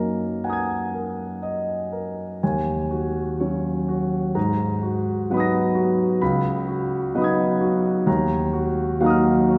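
Impressionist classical solo piano in F# major, hazy and luminous, drifting at a slow, rubato 60-66 BPM in 4/4 through a short passage cut from a longer piece. A warm, open grand piano sits up front and spans C#2 to A#6, moving through rich extended chords from F#69 to D#m7, G#m9 and C#11 before settling on D#madd9 at 8.1 seconds. A wet church reverb with a 2.8-second tail wraps the instrument in the resonance of a large hall.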